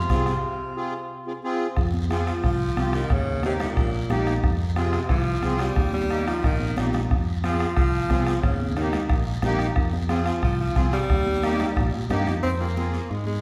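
Cumbia in F minor at 180 BPM, this passionate, danceable excerpt moves in a straight 4/4 over a simple sway between F minor and E-flat. A bright, twangy clean electric guitar with spring reverb opens with a brief melodic figure on F4 that stops at 1.4 seconds, as a break runs to 1.8 seconds. From there an edgy, forceful tenor saxophone takes a punchy, close-miked solo with vibrato in a pop style, ranging from Bb2 to C4 until 12.4 seconds. Underneath, a round, fingered electric bass anchors the low end while a sweet, reedy accordion with light tremolo tuning fills in the harmony. The percussion pairs a soft-beater bombo with ringing, high-tuned congas set in the background and a raspy guiro, with a short drum fill around 6.6 seconds. A wet recital hall reverb gives the whole a spacious, church-like resonance.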